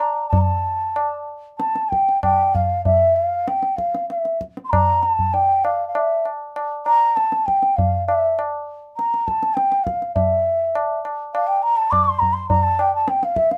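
A straight four-beat pulse gradually speeds up across this short Hindustani classical passage, carried by a low-tuned, ringing tabla that sits close and dry at the front. Over it, a hollow, airy bansuri with gentle vibrato and soft attacks sings a solemn, longing melody between E5 and D6, the whole recording set in a light reverb. The phrase shifts into a new section at 10.2 seconds before the cut at 13.6 seconds.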